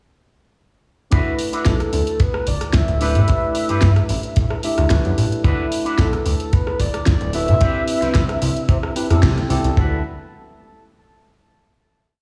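A fat, saturated analog bass with sidechain pumping drives this groovy, sunny nu-disco piece at 111 BPM in D mixolydian, where a tight four-on-the-floor kick and an overdriven pop kit with a disco backbeat sit under lush-chorused tine electric piano chords, a bright, twangy envelope-filtered guitar riff with 12-bit sampler grit and slapback echo, and a soft octave-layered synth lead entering at 1.7 seconds with tape-echoed hook phrases, all in a stone room before a band accent at 9.2 seconds and a final D69 chord at 9.8 seconds.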